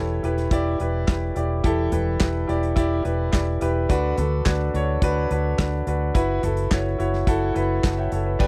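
A dry, close recording in a 1970s studio style, with little reverb, frames this short cut from a longer piano-driven pop piece, earnest and dramatic in mood, moving at 107 BPM in a straight 4/4. A concert grand piano carries the accompaniment from the start, its tone natural, up front and full in the low end, spanning G2 to B5. Beneath it, a vintage muted electric bass played with the fingers sits low between E1 and D2, sounding dark, round and punchy through its amp, with a foam-muted thud. An acoustic country drum kit joins at 0.2 seconds, captured in a small room and placed up front: a punchy kick, a medium-tuned snare, toms, hi-hat, handclaps and crash cymbals with a shadowed, dusky color. The harmony moves from Em to Bm/D and then to F#7sus4, and the piano adds a fill from 7.3 to 8.4 seconds just before the passage ends.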